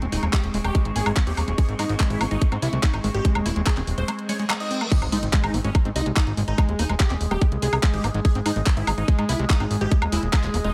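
A tight, overdriven electronic kick drives this alien psychedelic trance excerpt alongside a fat, tube-saturated analog bass and an overdriven garage kit of crash, handclaps, hi-hat and woodblock, while a huge, compressed supersaw melody with phaser and delay rides over a squelchy, distorted acid riff, a resonant overtone-sweeping drone and a warbly, nostalgic lo-fi pad in the background, and a very quiet reverse cymbal at 4.4 seconds leads into an impact as the drop lands at 4.9 seconds.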